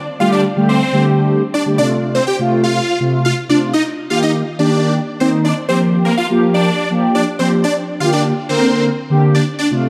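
A dark, warm production sits inside a lush hall reverb with a 2.4-second decay, giving this driving, confident pop passage a wet, spacious sheen. Cut from a longer piece and set in a straight 4/4, it has both parts entering together at 0.2 seconds. The supersaw chords carry the melody as a huge, bright, full-bodied unison of detuned sawtooth voices with fast attack and long sustain, coloured by phaser and tape echo. Beneath them, mellow synth brass supplies the accompaniment, a round, brassy detuned sawtooth tone with a filter sweep, chorus and vibrato, sitting up front and a little louder than the lead. The harmony moves from Dsus4 through F, Eb and Gm7 before settling on Bb6, and the brass holds on until 9.9 seconds.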